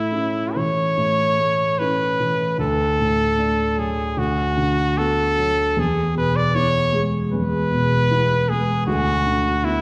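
Flowing in a rubato 4/4, this tender excerpt from a romantic classical duo features a bright solo trumpet singing the melody up front with light vibrato, while a dark, mellow baby grand piano supplies a long-sustained accompaniment, both set in a wet recital hall reverb that places the listener further back in the room.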